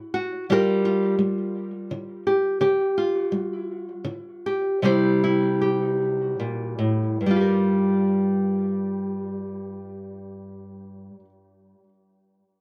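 Wistful and haunting, this brief excerpt from a longer folk piece features a solo fingerpicked nylon-string guitar, dark and small-toned with audible finger squeak and tape echo, sitting up front in a modest small room as it moves freely in rubato 3/4 between 70 and 87 BPM in G dorian, slowing from 2.6 to 7.2 seconds through chords from a rootless Dadd9 and Gm7/D to C before settling on Gm7 and falling silent at 11.3 seconds.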